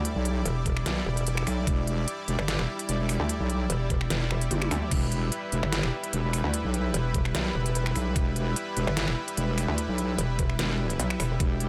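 Heavy wobble dubstep in E minor at 148 BPM with a half-time, lightly swung feel, this aggressive, menacing fragment stacks two up-front wobble basses, one dark and square-edged and the other metallic and saturated, both thickened with chorus and overdrive, over a lush, airy supersaw pad of sustained chords that pumps against the sidechain. An electronic drum kit with a deep snare, crisp hats, finger snaps, toms and crash cymbal sits up front with a tape-like glow, joined at 0.7 s by a knocking, overdriven electronic kick, and a brief drum fill lands at 4.5 seconds. The whole fragment rests on a single E minor chord inside a digital ambience.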